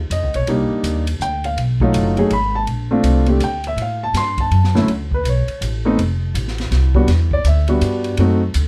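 A swinging 3/4 lilt at 163 BPM drives this short jazz piano trio excerpt, where the upright bass opens at 0.0 s with woody, pizzicato steel-string lines up front and the open drum kit joins on hi-hat, kick, ride and snare, its cymbals dark, its snare high-tuned and its kick boomy in an airy small room. A baby grand piano carries the melody across a broad range, natural and close, as chords drift from Cm9 through B7#11 and Bbmaj7 before settling into D major at 4.9 s, moving on through F and Em9. The production is dark and warm with light reverb, giving the trio a cozy, swinging glow.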